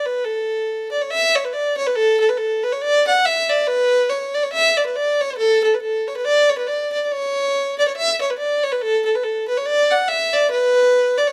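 A lone bowed fiddle, dark and woody with a light vibrato, carries this cheerful, bright Celtic folk excerpt, playing solo from 0.0 to 11.3 seconds in a range from A4 to F#5. The tune moves in a lilting, swung 2/4, with a brief opening phrase giving way at 1.1 seconds to a new strain that returns at 8.0 seconds. Close, detailed microphones keep the fiddle up front, wrapped in a light reverb.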